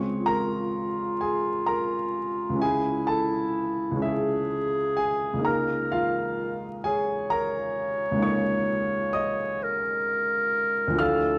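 Pastoral and luminous, this short cut from a longer impressionist classical duo drifts in a rubato 12/8 at 43 BPM in D-flat major, tuned to A4 = 439 Hz, with a clear, classical-style solo clarinet carrying the melody up front over a warm, smooth concert grand piano whose deep bass and short sustain lend a vintage tone to the accompaniment through Dbmaj7, Amaj7/C# and Db69 harmonies, all captured by close, detailed microphones in a moderate recital hall reverb with a layer of vinyl crackle.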